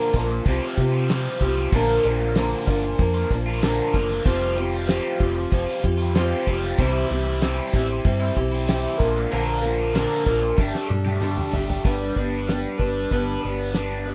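A steady, straight 4/4 groove at 95 BPM drives this short, nostalgic and jangly slice of folk rock and heartland rock, cut from a longer piece. Up front, a bright, boxy picked acoustic archtop guitar carries the accompaniment, complete with audible finger squeak, while a cranked stack guitar with overdrive and phaser plays a double-tracked riff further back in the mix. Underneath, a hollow-body short-scale electric bass played with the fingers gives a round, amped low end, and a cloth-damped drum kit sounds dry and thuddy, with a fat snare, tight kick and dark cymbals under a rolled-off top. A grainy tube shaker adds faint texture until 11.8 seconds, stopping as a drum fill that runs from 10.6 seconds comes to an end. The harmony moves through Fsus2/C, Bb, Fsus2, C and Bb before settling from Gsus2 onto G as a new section begins at 11.8 seconds, all captured in a rough home demo with small room ambience.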